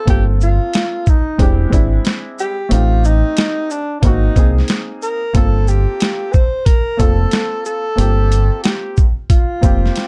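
Jazz-hop with a cool, smoky mood, cut from a longer piece: a gritty, pitched-down boom bap kit with a thumpy kick, high-tuned snare, hi-hat and shaker sits up front beside a round, dark fingered electric bass, all riding a swung 16th-note feel. A worn, woody, slightly detuned upright piano comps through chords like Gm11, E7alt and Ab9. Above it, a breathy alto saxophone plays a distant, roomy subtone melody with scooped notes and light vibrato, in a dry, dusky mix.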